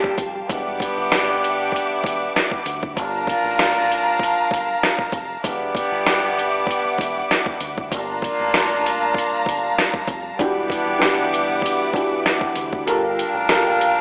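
A swung 97 BPM boom-bap groove from a compressed, gritty, sampler-style drum kit with a thumpy kick and medium-tuned snare drives this reflective yet tough hip-hop excerpt in E minor, where a round, punchy dub bass with tube saturation sits under lush bowed strings holding sustained Em9 and Gm9 chords, distant horn stabs ring out with tape echo, a mellow, worn and slightly detuned upright piano returns at 10.4 seconds, the kick drops out at 12.9 seconds, and vinyl crackle with a telephone-like tone gives the whole mix a dusty, lo-fi character.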